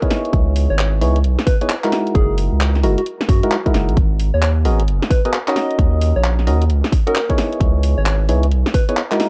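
A moody, bouncy two-step garage groove opens on a punchy, up-front electronic kick and a house kit with a cracking snare, handclaps and hi-hat, under hollow, nasal organ stabs with subtle chorus and a round, gentle keys-like synth lead set in the background, with chorus and analog delay. At 0.3 seconds a deep, thick, saturated sub bass enters up front with sidechain pumping, while the swung sixteenths and the C#m9, F#13, G#m9 and D#m7 changes keep things dark and shuffling. The drums carry a small-room re-recorded character within a dry, gritty hardware sound, and this cut from a longer piece ends at 9.3 seconds.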